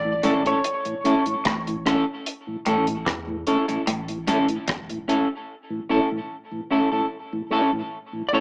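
Heard through a small-speaker sound in a wet small room, this uplifting, laid-back roots reggae fragment opens with a dark, slightly broken-up lead guitar carrying the melody through tube saturation and tape echo. Around it, a round, mellow tonewheel organ with chorus vibrato and slow rotary speaker holds the harmony, a dark, fingered semi-hollow guitar plays a low riff bathed in spring reverb, a bright, picked semi-hollow guitar comps with subtle chorus and tape echo, a round sine sub bass sits deep beneath, and a dry, rolled-off drum kit keeps time on hi-hat, tight kick and rim click. The drums and bass drop out at 5.3 seconds, leaving organ and rhythm guitar until the lead guitar returns briefly at 8.3 seconds.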